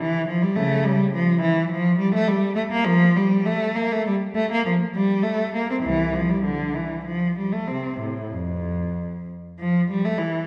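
A lilting triple metre, stretched and relaxed by free rubato, gives this passage the gentle sway of a stately dance. It is a classical, baroque-style suite movement for a single unaccompanied cello, serene in mood and taken from a longer piece. The lone bowed cello plays throughout, from 0.0 to 10.5 seconds, ranging from its deep low register up into the middle of its compass. Its tone is rich and expressive, shaped by soft attacks, singing vibrato and sliding portamento between notes. The instrument sits up front, yet the recording places the listener further back in a recital hall whose wet reverb lets each phrase bloom and linger.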